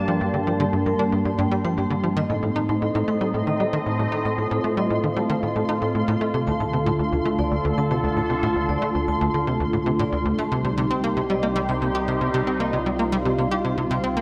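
A steady, straight 4/4 pulse drives this hypnotic, mysterious stretch of ambient, sequencer-driven space music, tuned slightly flat to A4 = 435 Hz and cut from a longer piece. Up front, a tight sequencer bass plays a punchy, nasal riff built from sawtooth and square waves with a fast-attack filter pluck, colored by analog chorus and delay. Sitting just as forward, a sweeping resonant pad holds sustained chords with a slow attack, detuned sawtooth and sine tones, a filter swell, a bright edge and chorus. Above them, a vibraphone struck with medium mallets rings out metallic arpeggios through delay with a fast motor vibrato, while a mellow, tempo-synced gated texture of detuned triangle waves pulses quietly high on C6 with chorus and its own reverb. The harmony moves from Gmadd9 to Adim at 2.2 seconds, Dm at 6.3 seconds and Cm at 10.5 seconds, and a wet concert hall reverb with a 2.3-second decay surrounds the whole 14.2-second passage.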